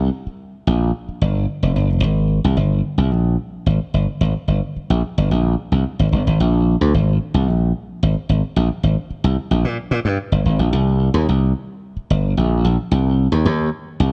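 A slap bass carries this funk excerpt entirely by itself, playing alone from 0.0 to 14.1 seconds in a sly, funky mood. Its electric tone is bright and punchy, heard direct and amped and placed up front, ranging from F1 up to Bb2. The groove sits at 110 BPM in a straight 4/4 feel, centred on C minor. A moderate echo chamber reverb gives the room a lingering tail, while the overall production leans dark and warm. The short passage moves through three sections, with the middle one running from 2.0 to 10.7 seconds before the final stretch closes out the cut from a longer piece.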